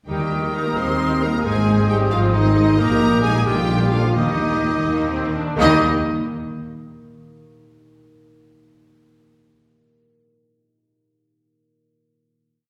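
A bright violin section carries the graceful, spirited melody of this short, dramatic romantic orchestral piece in Eb major, moving fast in 6/8 at 82-90 BPM, with a second violin section doubling the tune an octave below, a clear oboe and an airy flute adding chords in the tune's rhythm, a mellow clarinet and dark French horns doubling the line in the background, rich violas rocking a two-note figure over cellos and double basses that hold the bass on the beats, and a very quiet harp's ringing broken chords that linger alone after the rest stop near 5.9 s until 7.0 s, all set back in a wet scoring-stage reverb.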